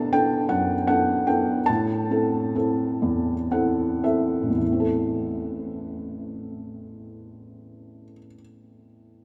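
Unfolding in a rubato 6/8 at 34-54 BPM counted in dotted quarters, and slowing over the first 4.6 seconds, this classical solo piano piece in A dorian has a wistful, dark mood. A felt-muted upright piano, soft and intimate with a thick-felt mellowness and sitting up front, plays alone from A1 to A5, moving from Bm7 to Am at 1.7 seconds and adding a fill from 3.0 to 4.6 seconds before a second section begins. It rings in a cathedral-like space with a long reverb tail, and the short passage is cut from a longer piece.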